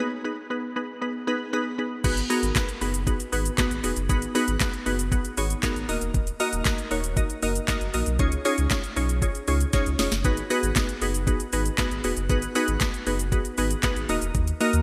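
Set in a light reverb, this dance-pop cut from a longer piece moves at 117 BPM in a straight 4/4 in G# minor, with a confident yet bittersweet mood. A glassy wavetable pluck opens alone, crystalline and slightly nasal, with a detuned, full-bodied digital tone, a noise layer and a filter sweep, its fast attack and short decay shimmering through chorus, slapback echo and sidechain pumping up front. At 2.0 seconds a deep sub bass with an added octave arrives, a mellow sine-and-triangle blend with a fast attack and sustained notes that also pumps against the kick. The smooth R&B drum kit enters at the same moment, electronic and produced, with a knocking kick, sharp snare, metallic hi-hats, handclaps, shaker and crash cymbal sitting forward in the mix. The harmony moves from G#m7 through D#m and C#add9, and a drum fill at 9.7 seconds leads back to G#m7 before the passage settles on D#m.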